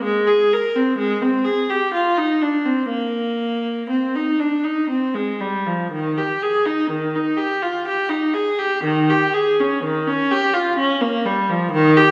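Classical baroque-style suite movement for unaccompanied viola in a radiant, flowing 3/4 with uneven, rubato beats, where a single bowed player draws a reedy gut-string tone with light vibrato in period style from Eb3 to Bb4, set up front yet carrying a distant air within the wet reverb of a church or concert hall, in a brief cut from a longer piece.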